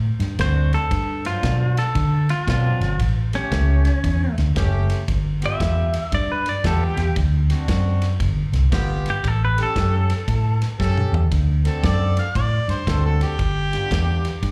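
A swung shuffle at 116 BPM in 4/4 drives this laid-back, rollicking electric blues in D mixolydian, with a round, foam-muted fingered bass up front over a natural country drum kit with a punchy kick and dark cymbals. A twangy, compressed clean electric guitar takes the solo through slapback echo and digital delay while a bright, close-miked horn section adds stabs; after a drum fill at 10.8 seconds, a clear harmonica with light vibrato, scooped notes and overdrive enters at 11.8 seconds to carry the solo. The sound carries the club reverb of a live gig heard through the venue's PA, and the clip is cut from a longer piece.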